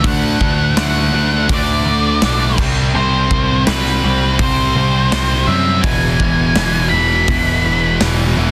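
A dark, fuzzed-out lead guitar with an octave edge and a slapback echo carries the melody in this anthemic, cathartic stretch of quiet-loud alternative rock, cut from a longer piece. Beneath it, a growling, overdriven electric bass sits up front with a punchy, direct-and-amped snarl. Three rhythm guitars stack the riff behind the lead: a scooped, high-gain guitar and a tight, double-tracked distorted guitar in the background, plus a warm, thick fuzz guitar tucked very quietly into the mix. A big, natural-sounding acoustic drum kit drives the straight 4/4 feel with a punchy kick, a medium-tuned snare given some soft clipping, and bright crash and hi-hat cymbals. The harmony moves from D to C5 and then E, the lead dropping out at 8.0 s just before the drums at 8.2 s, all wrapped in light reverb and a dense, heavily limited modern master.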